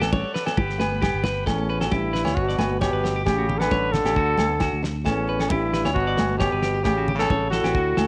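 This joyful, danceable highlife guitar band excerpt opens at 134 BPM in a straight 4/4, with a clean, twangy electric guitar picking bright arpeggios over a round, punchy fingered bass, a small, fingerpicked nylon-string guitar tucked very quietly underneath, and a vintage, buzzy combo organ holding sustained chords. A dry, mid-forward 70s drum kit with a fat snare and tight kick drives the groove, while ringing agogo bells and damped, thin-skinned congas sit close in the background. At 1.5 seconds the organ drops away as a mellow, jazz-style trumpet takes the melody up front, its notes scooped and touched with light vibrato. A present, pop-style trombone carries a second line in a lower register behind it. The harmony moves between D, Gmaj7 and A7 in an A mixolydian setting, and the whole band sits in light reverb, its top end rolled off above 10.6 kHz.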